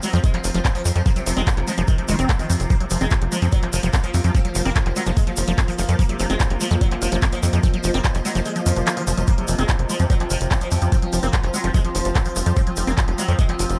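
Psychedelic trance at 146 BPM, hypnotic and driving, cut from a longer piece, where a knocking electronic kick and a punchy, saturated sequencer bass sit up front beneath a squelchy, resonant acid bass riff with chorus and tape echo, a buzzing plectrum-plucked sitar melody with shimmering sympathetic strings through phaser and tape echo, a detuned drone of moving overtones, a blurred granular cloud pad, bright hats and handclaps from the drum and bass kit and a grainy tube shaker, with several of the melodic parts pumping against the kick, and the kick drops out from 8.5 to 9.3 seconds while a faint electronic swell sounds in the background.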